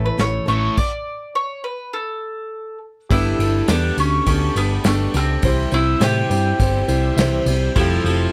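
A dry, close 1970s-style studio sound frames this hopeful, open-road folk and heartland rock excerpt at 103 BPM in 4/4, where a mellow, double-strung bowl-back mandolin carries the melody over a bright picked archtop acoustic guitar with finger squeak, a round, punchy hollow-body electric bass up front, soft brushed drums with a dark, rolled-off top and a very quiet polished grand piano, while a biting, double-tracked overdriven guitar riff drops out at a stop at 0.8 s, a lightly overdriven tonewheel organ with slow rotary shimmer and a jingly, distant tambourine join at 3.1 s, and the piano adds a fill at 6.9 s.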